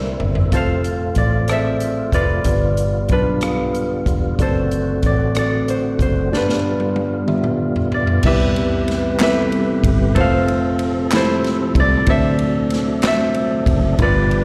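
This sounds like a live performance heard through a venue's sound system, with a recital-hall ambience around a fairly dry mix. It is a reverent, uplifting slow gospel excerpt in C major, moving at 62 BPM in 6/8. An up-front concert harp carries the melody with a fingerpicked, ringing tone and a slapback echo. A mellow, clean tine electric piano provides accompaniment, while a tonewheel organ holds sustained chords through a fast rotary speaker and chorus vibrato, with audible key click. A bright, foam-muted fingered electric bass anchors the low end, and a swinging big-band drum kit sits up front with dark cymbals, a medium-tuned snare and a punchy kick, playing a fill from 6.3 to 8.2 seconds. Crisp, close group handclaps join from 9.2 to 13.3 seconds as the harmony moves through chords such as Fmaj7, G7 and Cmaj7 before the excerpt cuts off on D7.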